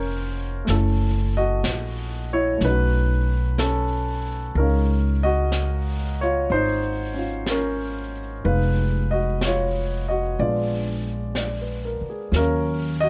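A jazz ballad in an intimate, melancholic mood, moving at a slow 62 BPM in 4/4 with a gentle swing on the eighth notes. A concert grand piano carries the accompaniment from the start, its tone rounded and full with a deep low end, sitting up front in the mix. Alongside it, a pizzicato upright bass with steel strings gives a woody, growly line in the low register, also placed close and present. A brushed drum kit joins at 0.7 seconds, softer than the others, with a high-tuned snare and hi-hat heard in a studio room. The harmony is rich and dusky, moving from Bbm9 through Gbm7, B9 and a long Dbmaj9 before Fm7b5 and Bb7b9 lead to Ebm7 at 12.3 seconds, and the dry, detailed sound keeps every instrument intimate in this short cut from a longer piece.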